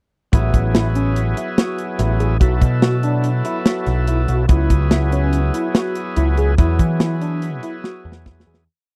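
A dry, close recording with a 1970s studio character and little reverb opens this short, bright and intricate progressive instrumental in 5/4 at 144 BPM, set in A major with a straight feel. Up front, a tight funk drum kit plays a dark, smooth 5/4 groove on hi-hat, kick and a medium-tuned snare, its top end rolled off. The overdriven picked electric bass sits equally forward, warm and amped, locked to the kick drum. A clean tine electric piano runs an arpeggiated ostinato through ensemble chorus, while a thick, gritty overdriven tonewheel organ holds quartal chords through a slow rotary speaker. The harmony moves from Amaj7(no3) through B7(no3) and E69/C# to E, and the piece fades out from 6.6 seconds as the drums play a fill beginning at 7.8 seconds.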